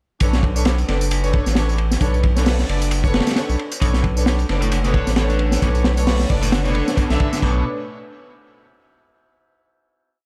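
Funky and raw, this short breakbeat piece in B minor runs at 133 BPM with a swung feel, as a crunchy, gritty breakbeat kit with a punchy kick and high-tuned snare plays up front beside a thick saturated sub bass's skipping syncopated line, a machine-layered tambourine and distant string stabs with vintage sampler grit and delay in dotted-rhythm chords, before a moody detuned analog pad with sidechain pumping and a double-tracked overdriven guitar riff join at 3.8 seconds, all resolving on a final chord at 7.4 seconds.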